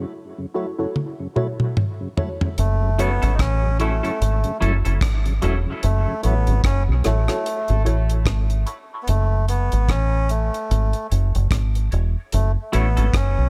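A tonewheel organ opens this deep, heavy dub reggae excerpt at 74 BPM in F# minor, its full tone turning through a slow rotary speaker with dub echo in the background. A dark, detuned filtered chord stab with phaser joins it, along with a dry drum kit with a tight kick, whose fill leads into the main section at 2.6 seconds, where a round, punchy fingered bass sits up front and a reedy, breathy melodica carries the tune through dub echo. A clean semi-hollow guitar adds brief tremolo accompaniment, a filter sweep passes through the middle, and the organ stops at 9.0 seconds in an echo-heavy mix with little reverb.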